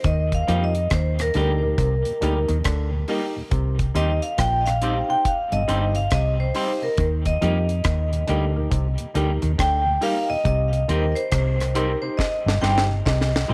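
Sunny and uplifting, this short roots reggae excerpt has a bright, ringing vibraphone with fast motor vibrato carrying a tape-echoed solo melody over a round, foam-muted bass placed up front and a dry, deep drum kit with a high-tuned snare and tight kick, which closes with a fill from 12.2 seconds. An auto-wah clav plays a stringy riff in the background, while from about 0.5 seconds a clean, picked electric guitar with tape echo and short, dark grand piano stabs join a very quiet tonewheel organ with key click and slow rotary speaker. The chords move between Eb and Cm, all set in light reverb with small room ambience.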